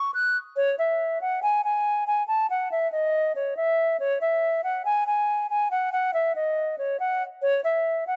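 A solo concert flute carries this dark, menacing half-time hip hop excerpt, its pure, straight, tongued tone sitting up front between C#5 and F#6 for 8.2 seconds in a small, dry room, with a gritty, dull-topped hardware sound.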